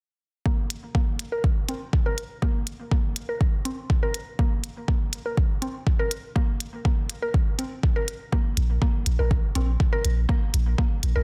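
Sparse and cool, this minimal techno excerpt runs at 122 BPM in a straight 4/4, tuned to A4 = 441 Hz, with a woody, round, mallet-like FM synth pluck riff carrying chorus, dub echo, sidechain pumping and a filter sweep across its full span. An overdriven, deep electronic kick and clicky, overdriven hi-hats sit up front, and a punchy sine sub bass with a pitch-drop attack, tube saturation and its own sidechain pumping arrives at 8.6 s. The mix is dry, with little reverb, and the master is dense and heavily limited.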